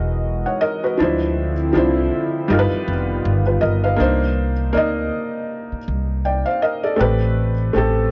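Swung sixteenths at 80 BPM in 4/4 carry this hazy, nostalgic lo-fi hip hop fragment: a soft, felt-muted upright piano with audible action noise and cassette tape colouring plays mellow accompaniment up front over a woody, dark pizzicato upright bass with tube saturation, while a warbling, detuned tape-like pad with chorus and a slow attack sustains chords from 0.0 s until it stops at 4.0 s, the recording sitting in a moderate studio reverb with worn, pitch-drifting old-tape character as the harmony moves through Emaj9, Dm9, Gaug7 and Cm9 to reach Am9 at 7.0 s.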